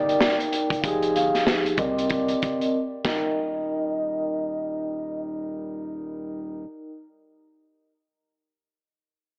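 Soft-mallet vibraphone rings up front through this confident, nostalgic boom-bap hip-hop excerpt in Eb major at 95 BPM with a swung 16th feel, its metallic shimmer and slow motor vibrato moving over Ebmaj7, Fm9 and Cm9 chords. A gritty, saturated breakbeat kit with a tight kick and a medium-tuned snare drives the groove until 3.2 seconds. Meanwhile a hollow, airy jazz flute carries the melody until 5.2 seconds and a bright trumpet section adds tape-echoed stabs over a deep, round dub sub bass. A filter sweep and a brief silent gap mark the turn into the second section, and moderate plate reverb and an AM-radio coloring give the mix a vintage haze.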